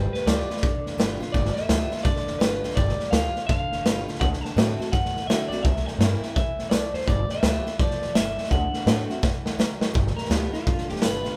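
Swung eighths at 167 BPM in 4/4 drive this retro, rowdy rockabilly excerpt in G mixolydian, where a twangy, slightly broken-up electric guitar through a small old amp with digital delay carries the melody over a bright, picked dreadnought acoustic in the background, a woody, growly pizzicato upright bass and a gritty, punchy garage drum kit placed up front in a pumping small room, with a drum fill at 9.2 seconds leading into a clean electric guitar solo from 9.9 seconds, the band captured live in one room with light reverb.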